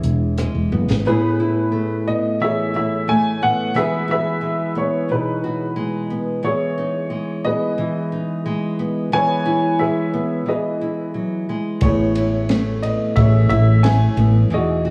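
Heard from further back through a moderate plate reverb and small room ambience, this melancholic, heartbroken acoustic folk-pop ballad moves at 89 BPM in a straight 4/4. A woody, slightly detuned upright piano carries the melody up front, its audible action noise adding a natural, close feel, while a small fingerpicked nylon-string guitar supplies the accompaniment throughout. A growly, hollow-body fretless electric bass sits up front, and a compact cocktail kit, dark and smooth with a high-tuned snare, punchy kick and rolled-off top, plays a brief drum fill from 0.7 seconds. The bass drops out at 1.0 seconds and the drums at 1.1 seconds, leaving piano and guitar alone over Amaj9, Emaj9 and C#m9/E chords. Bass and drums return at 11.8 seconds as the harmony comes back to Amaj9, before this excerpt is cut from the longer piece.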